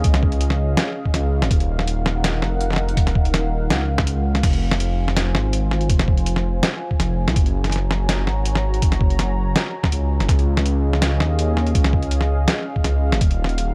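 A half-time drum and bass groove at 164 BPM rides on a thumpy, pitched-down electronic kick and a gritty, compressed sampler-style kit whose medium-tuned snare, hi-hat and crash sit up front with a tape-warm edge, the kick dropping out at 13.3 seconds. Beneath it, a deep, rumbling detuned saw bass with a beating unison tone holds the low end, while a moody analog pad with a sub octave, slow attack, chorus and sidechain pumping sustains chords moving from Db through Ebm, Fm and Gb. The production is dark and spacious, with digital ambience lending a tense atmosphere to this excerpt cut from a longer piece.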